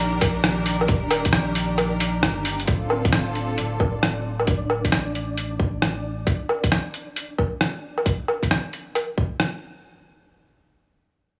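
A rich, bowed string section opens this wistful future garage excerpt at 134 BPM in D phrygian, holding smooth sustained chords with light vibrato, roughened by vintage 12-bit sampler grit and sidechain pumping. Beneath it, a deep, round sine sub bass fills the low end with its own sidechain pumping, while a grainy, flickering texture with a slow attack and long release drifts mellow and detuned in the background through its built-in reverb. From 0.2 seconds, an overdriven, tight electronic kick sits up front alongside a compressed, pitched-down, muffled sampler-style kit of hi-hat, rim click and woodblock, all played with a 65% swing on the sixteenths. The kick drops out between 1.8 and 2.7 seconds, returning as the harmony moves from Ebmaj7 to Dm7. The strings stop at 4.5 seconds and the bass at 6.3 seconds, leaving the drums and the texture to carry the melancholic mood in a dry, gritty studio sound with light reverb.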